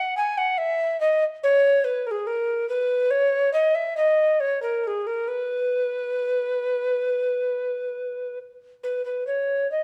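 Flowing and introspective, this short passage cut from a longer piece is a baroque-style fantasia for unaccompanied recorder in B major, moving at 69 BPM in 4/4 with a free, rubato feel. A mellow tenor recorder plays alone from the start to 9.8 seconds, ranging from G#4 to G#5. Its woody, airy tone carries vibrato, and each note begins with a crisp chiff that sits up front in the sound. A wet stone-room reverb with a 1.3-second decay surrounds the line, lending a dark, warm cast to the production.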